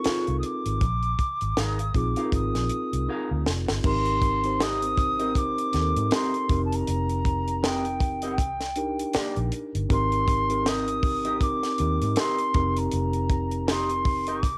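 A hollow, distant silver concert flute sings the melody with vibrato and plate reverb over a clean tine electric piano, a twangy, slightly broken-up guitar riff through a small old amp with spring reverb, a round foam-muted fingered bass and a dry funk kit with a high-tuned snare in this bittersweet, cinematic 1970s-style soul excerpt at 79 BPM, with the flute, piano, guitar and drums carrying cassette-tape colour; a drum fill at 3.1 seconds leads from Dbmaj7 and Bb7sus4 into a second passage moving through Abmaj9, F9sus4 and Cm9.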